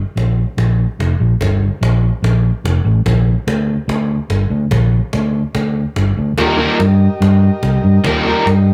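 A rough rehearsal-room sound with moderate room ambience frames this menacing, swaggering garage rock excerpt, cut from a longer piece in a straight four. An overdriven, amped fingered electric bass sits up front from 0.2 seconds, pushing low over a woody cajon with faint snares that sounds acoustic and live in the room, as the harmony moves from an open start to Bb and then Eb. At 6.4 seconds a raw, picked, double-tracked garage guitar riff arrives up front with warm overdrive, joined by mellow, clean sustained chords from a vintage combo organ shimmering with light vibrato.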